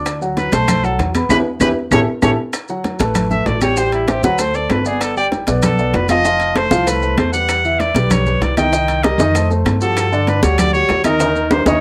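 A cassette-tape home recording with a moderate studio reverb frames this sophisticated, danceable Afro-Cuban jazz at 194 BPM, where a bright, vibrato-laden trumpet solos up front over a warm concert grand piano with deep bass, a woody, thumpy pizzicato upright bass, ringing high-tuned congas, very quiet round bongos, metal-shell timbales and dry claves in the background, and grainy vintage maracas, with a band accent and drum fill at 1.3 seconds and another fill at 11.2 seconds.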